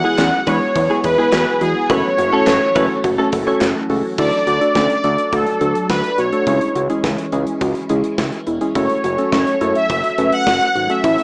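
A gated 80s drum kit with a tight kick, bright cymbals, snare and handclaps drives this nocturnal synth-pop excerpt in straight 4/4 over a fat, saturated analog bass, while a bold, brassy analog synth lead with vibrato sits up front carrying the melody. A clean, direct-recorded electric guitar with ensemble chorus and analog delay adds a second line until 3.7 s, a warbling, lo-fi pluck and a soft, round arpeggiated pluck in the background fill the middle, and a very quiet, swirling string machine with phaser holds sustained chords. The rough home-demo mix has a small-speaker sound and moderate studio reverb, moving from Eadd9 and F#m7 into a D, C#m, F#m progression from 4.2 s.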